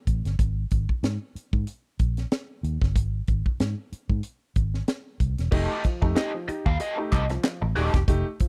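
A strutting, gritty funk groove at 94 BPM in F mixolydian opens with a tight kit (high-tuned snare, hi-hat, kick and crash) and a dark, foam-muted fingered electric bass, both up front in a dry, close 1970s-style room, until at 5.5 seconds an overdriven, picked garage guitar with wah and woody upright piano stabs arrive on an F9 chord, joined briefly by crisp handclaps in the background from 6.2 seconds.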